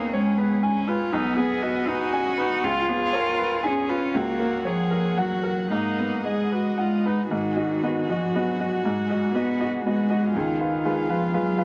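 Drenched in spring reverb and captured on cassette tape, this fragile, longing neoclassical fragment in a rubato 3/4 places a dark, intimate cello, bowed sul tasto with vibrato and a tape echo, up front as the second line alongside a bright, woody upright piano, while a single rich, floating viola and a warm chamber string section holding sustained chords in the background fill out the accompaniment.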